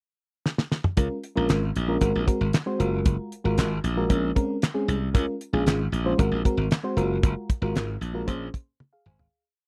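A damped seventies drum kit opens with a pickup-bar fill before a glassy, growly slap bass joins at 1.0 seconds with a fat syncopated boogie line and a mellow, round FM electric piano adds dark, chorused syncopated chords and short fills over Db6, Ab9, Gbmaj9 and Bbm9, driving this feel-good, danceable early-eighties boogie funk piece at 115 BPM in Db major, with a fat snare layered with handclaps and a tight kick in a dry, close seventies-style studio sound until a fade-out from 7.2 seconds and a final drum fill.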